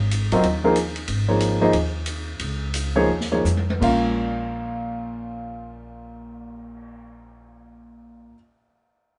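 A stone room's moderate reverb surrounds this short modal jazz fragment, cut from a longer piece, played live by a trio in one space, with a rounded top that stops short of any high sparkle. In Bb minor and 4/4, the swung pulse sits between 159 and 187 BPM, slowing from 1.1 to 3.8 seconds as a drum fill closes the opening passage, and the mood is hypnotic and spiritual. The baby grand piano is the most prominent part, up front and warm, carrying the accompaniment from Bb2 to F5 over an Absus4 chord that gives way to Bbm at 3.8 seconds. The pizzicato upright bass, woody and steel-strung, holds the low end from Ab1 to F2 for the full length. The acoustic drum kit, with dark cymbals, a medium-tuned snare and a boomy kick, sits lowest in the balance, using crash, ride, hi-hat, toms and a cymbal swell before it stops at 6.8 seconds, leaving piano and bass to finish.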